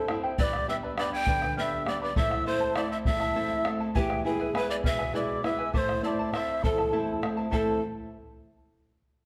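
A breathy, mellow bamboo pan flute carries the tune up front, its tongued notes marked by chiff and vibrato, while a hollow cane quena adds a straight-toned second line above it with a crisp attack and lifted highs. Underneath, a shimmering charango with fingerpicked double strings and a fingerpicked flamenco guitar with fresh strings move through G, A minor and E in a straight 6/8. A deep, saturated bombo enters at 0.1 s, giving this earthy, festive Andean folk excerpt a dark production and the glow of a recital hall.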